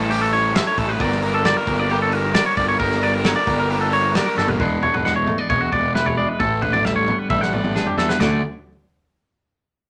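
A twangy, up-front electric guitar spins clean picked arpeggios through this wistful, bright math rock and midwest emo fragment at 134 BPM, riding over a round, fuzz-driven picked bass and a lo-fi, double-tracked garage guitar riff that gives way at 4.6 seconds to a dark, scooped clean guitar accompaniment, while a loose indie kit with a tight kick and rolled-off top drops fills at 4.4 and 7.3 seconds in a small, moderately reverberant room.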